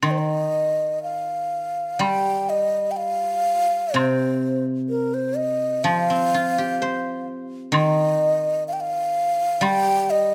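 This Chinese traditional chamber piece, cut from a longer work, drifts in a wistful, tender rubato around 63 BPM in 4/4, set in the C yu mode. A breathy, soft-attacked bamboo xiao carries the melody up front with vibrato, while a silvery guzheng played with fingerpicks rings out its accompaniment close beside it. A dry, dark-toned woodblock sits in the background until 9.8 seconds, and the close, detailed sound is wrapped in a moderate recital-hall reverb.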